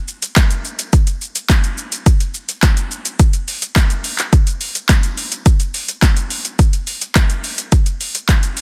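A deep house drum kit of deep kick, punchy snare, metallic hi-hat, handclaps and shaker drives this energetic, straight 4/4 pop excerpt at 106 BPM, its layered, overdriven electronic sound sitting up front in a dry, dense, heavily limited modern master from 0.1 to 8.6 seconds.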